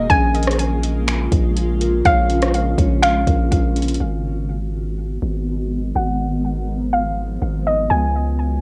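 This short cut from a longer piece has a dry, close home-cassette sound, with the drums carrying their own tape grit. It is ethereal, melancholic cloud-rap in G# dorian at 123 BPM, felt in a half-time 4/4 pulse. A hollow, bouncy square-wave pluck with detuning, chorus and tape echo sits up front with the melody, while a granular pad supplies cloudy, evolving sustained chords through its built-in reverb, low-pass filter and sidechain pumping. A deep, sine-like 808-style bass holds long decaying notes, and a dark, clean electric guitar plays fingered arpeggios in the background, filtered and echoed. A smooth electronic R&B kit of soft kick, metallic hi-hats, finger snaps and rim clicks, re-recorded in a large room, plays up front with the guitar until 4.0 seconds. The harmony moves from A#m7 to G#m7 at that point, then settles on C#sus4 at 7.9 seconds, leaving the pluck, pad and bass to carry the close.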